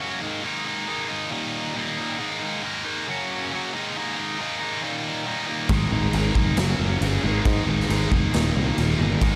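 A heavy, high-gain guitar, double-tracked and up front, drives a restless, bittersweet riff in this short cut from a quiet-loud alternative rock piece at 137 BPM, cycling through Absus2, Eb and Gb chords until a thick fuzz guitar in the background, a growly picked electric bass and a gritty, punchy garage drum kit with crash, kick and snare join at 5.7 seconds in a dry sound.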